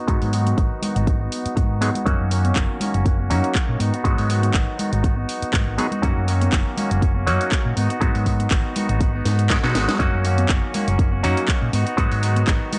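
Dry, gritty and tape-dulled, this sensual, nostalgic filtered disco house excerpt at 121 BPM in G# minor swings lightly as a twangy, direct-recorded clean guitar riff with 12-bit sampler grit and a nasal, phased clav ride a filter sweep over a round, dark hollow-body fingered bass, the three of them pumping against an up-front, punchy electronic kick, while a house kit of cracking snare, handclaps and hi-hat plays alongside ringing tambourine and congas sitting in the background across G#m7 and F#6 chords, with a drum fill at 9.3 seconds.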